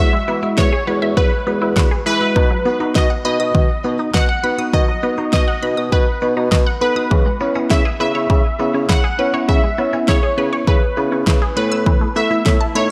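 A dreamy, reverb-soaked synth-pop passage in a moderate plate ambience carries a nostalgic, wistful mood over an Eadd9, B, C#m7 and Asus2 progression. Up front, a punchy, detuned sawtooth polysynth plays a funky comping melody with chorus and diffuse delay, beside a bell-like, clean tine electric piano and a squelchy, ring-modulated blip pluck whose phased arpeggios ripple through the echoes. A mellow, distant bassoon with light vibrato carries the bass line, a punchy, tape-warm electronic drum kit enters at 0.6 seconds with fat snare, and a very quiet electronic swell appears at 12.6 seconds.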